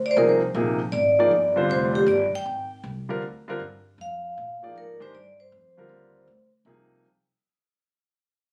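Modal jazz in F dorian at 157 BPM with a swung 4/4 feel, this cool, spiritual fragment of a longer piece rests on a single Fm69 chord and fades out across its 7 seconds. Up front, a vibraphone struck with medium hard mallets carries the melody with a metallic, ringing tone, slow motor vibrato and a boxy small-room color. A clear baby grand piano with short sustain comps close by, while a pizzicato upright bass on gut strings sits lower in the mix with a woody, dark, thumpy sound, all captured dry on a phone in the room.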